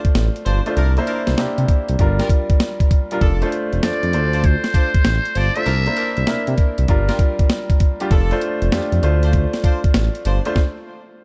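A gritty, pitched-down sampler drum kit with a thumpy kick and high-tuned snare opens alongside a polished baby grand piano in this flirty, upbeat new jack swing excerpt with swung sixteenths, joined by a smooth sawtooth synth bass up front and soft-attack jazz horn stabs carrying delay, while a buzzy, raspy metal-muted trumpet melody with delay enters at 3.8 s and stops at 6.5 s, set in a dark production with light small-room reverb before a brief stop at 10.6 s.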